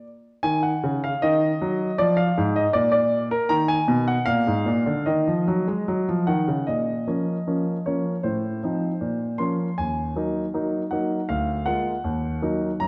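Elegant and serious, this brief excerpt from a classical-period piano sonatina unfolds at 78 BPM in 2/4 with a rubato feel, as a solo grand piano, present, polished and up front across a range from D2 to C6, moves from Eb minor into Bb minor at 6.7 seconds through chords such as Ebm, Bb7, F7/A and Bb7/D, all set in a wet recital hall reverb.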